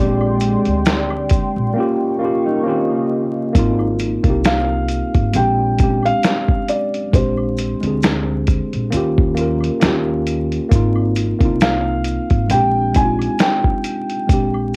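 A compressed, pitched-down sampler drum kit sits up front in this mellow, nostalgic lo-fi hip hop excerpt, its thumpy kick, medium-tuned snare, hi-hat and finger snaps roughened by 12-bit grit and a large-room re-recording, all over a gently swung 16th-note feel. Beneath it, a worn, slightly out-of-tune tine electric piano carries the chords on cassette tape, joined by a woody pizzicato upright bass and a faint background layer of woodblock, maracas and group handclaps. A deep, detuned analog pad with chorus colours the opening moments until 3.5 seconds. The drums drop out from 1.8 to 3.5 seconds while a dark, fingered electric guitar slips in, treated with spring reverb and tape echo. At 4.5 seconds a soft, felt-muted upright piano takes the melody, intimate and heavy with audible action noise, as jazzy extended chords cycle beneath it. Light reverb and vinyl crackle wrap the whole home-cassette sound in a hazy, faded glow.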